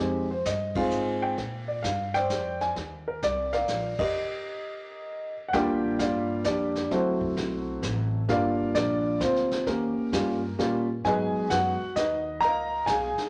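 A baby grand piano and a pizzicato upright bass open this relaxed, sophisticated jazz waltz in swung triple time, with the brushed drum kit joining at 0.5 seconds. The intimate, up-front piano carries the melody with long sustain and audible action noise over the woody, thumpy gut-string bass. The drums bring dark cymbals, a punchy kick and a rolled-off top, all in a moderate large-studio reverb. The trio hits accents together, then stops from 4.1 to 5.5 seconds before a new section rich in extended chords such as Ebmaj9, Gm7 and Db9 carries this cut from a longer piece onward.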